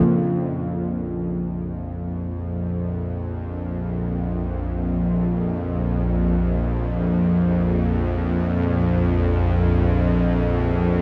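In free time, this unsettling, desolate ambient fragment, cut from a longer piece, fades in over its 11 seconds on a single bowed-like drone: a tense, string-like sawtooth layer with detuned unison voices, a breath of noise and a sine, slow to attack, sustained with vibrato and a long release, sitting up front in the low register from Bb1 to F2, all swallowed by a huge, wet ambient reverb that hangs for 7.3 seconds in a dark, warm production.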